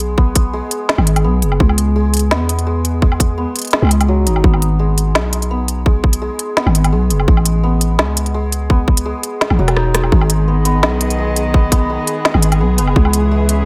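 A half-time groove at 169 BPM in 4/4 drives this dark, cinematic drum and bass in G# minor, built on a tight, overdriven electronic kick and an up-front organic electronic kit with a woody snare, crisp hats, rim clicks and woodblock, and a drum fill at 9.4 s where the kick briefly drops out. Beneath it, a growling, buzzy 808-style bass with tube saturation sits up front, while a shimmering hammered santur plays arpeggios through dub echo over chords moving between G#m, C#m and A. At 10.1 s a reedy, bowed cello section enters with sustained chords and sidechain pumping, the whole mix set in light reverb.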